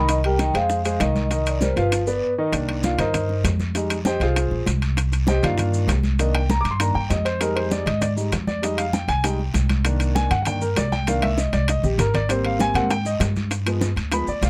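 Close, detailed and lightly reverberant, this sultry, sophisticated Afro-Cuban jazz excerpt opens with a mellow, ringing soft-mallet vibraphone melody carrying slow motor vibrato over piano and bass, before the warm concert grand piano with deep bass, up front beside a woody, thumpy pizzicato upright bass, takes a solo from 2.5 seconds over a dry percussion bed of metal-shell timbales, bright high-tuned congas, round low-tuned bongos, raspy vintage guiro and grainy maracas, with a drum fill at 11.1 seconds.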